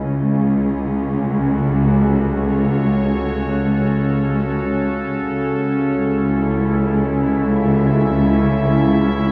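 Bathed in a vast, echoing cathedral reverb, this reflective, spacious ambient excerpt drifts in free time across its 9.3 seconds. A morphing, warbling wavetable pad with a vintage, full-bodied character and chorus fades in as it holds sustained chords, moving from F#m/C# to A/C# at 5.3 seconds. Beneath it, a dark, woody cello section sits up front, its lush, bowed ensemble tone carrying vibrato on a low C#.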